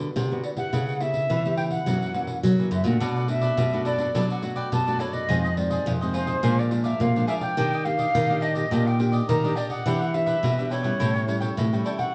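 Two fingerpicked nylon-string guitars open this lively, festive samba-choro fragment at 105 BPM alongside a jingly pandeiro: one plays bright, full-bodied classical accompaniment up front while the other carries a warm bass line. An airy concert flute takes the melody from 0.4 seconds, tongued and expressive with vibrato, sounding somewhat distant yet still prominent. A crisp, picked cavaquinho joins at 3.0 seconds as the harmony moves through jazzy seventh chords from Gmaj7 to Ebmaj7 and on to A7, all captured as a live band in one room with moderate studio reverb.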